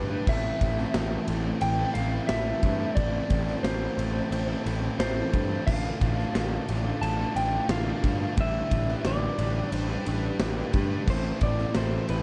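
This is a dark, dry post-rock excerpt with very little reverb, a brooding and melancholic cut from a longer piece in a steady four. A dark, slightly broken-up slide guitar carries the melody through a tape echo. Beneath it, a compressed fuzz guitar and a thicker fuzz guitar set further back play distorted riffs, while an overdriven, up-front picked bass growls in the low end. The big rock drum kit enters at 0.3 seconds with a punchy kick, a medium-tuned snare and bright crash and ride cymbals, all roughened by vintage 12-bit sampler grit. From 1.5 seconds, a very quiet, glassy FM pad adds ethereal sustained chords, as the harmony moves from Amadd9 through Dm/A and G/A before returning to Amadd9.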